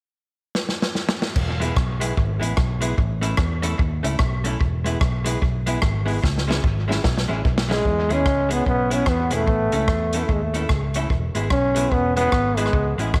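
A swung ska groove at 148 BPM in E major opens with a drum fill from a swinging big-band kit, airy and punchy with dark cymbals and tape echo, before a round, amped fingered electric bass enters at 1.4 seconds and a clean, compressed hollow-body jazz guitar adds tape-echoed accompaniment. The upbeat, joyful progression moves through E, A and C#m, with a second drum fill leading into the final stretch. At 7.7 seconds a warm trombone steps up front with a pop-style solo melody touched by tape echo, all set in a small room with light reverb in this short cut from a longer piece.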